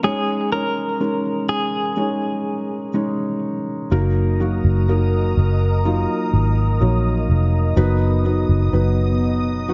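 A clean, direct-recorded electric guitar carries a brief tremolo-and-delay melody over soft, felt-muted upright piano until 3.4 seconds in this hopeful, emotional pop ballad fragment, before a round, foam-muted fingered bass enters up front at 3.9 seconds and a glassy, ethereal FM pad with ensemble chorus, phaser and its own reverb fills in sustained chords from 4.5 seconds, all set in a light digital ambience.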